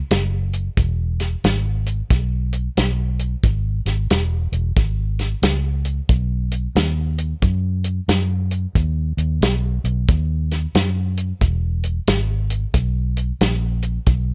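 Laid-back and swaggering, this electric blues shuffle in E major rolls along at 90 BPM in 4/4 with a swung eighth-note feel, as a dark, round, punchy foam-muted fingered electric bass and a dry, tight-kicked soul drum kit of hi-hat, kick and snare sit up front together from 0.1 to 14.3 seconds in a nearly reverb-free sound with a rolled-off top, cut from a longer piece.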